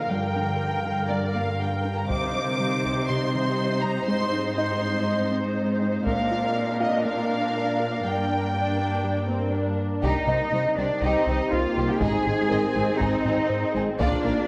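Futuristic and relentless, this cinematic hybrid orchestral and electronic film score excerpt sets a distant, lush violin melody over bowed viola and an up-front cello bass, wrapped in a glassy, ethereal FM pad, faint piano texture and a very quiet, driving sawtooth arpeggio in a moderate scoring-stage reverb. Hard-stick taiko hits punctuate the phrases at 2.1 and 6.1 seconds before the drums return at 10.0 seconds, where a background second violin line, a very quiet dark horn section, a round, deep analog bass riff and a soft-attack double bass section with portamento all join over the cycling minor-key chords.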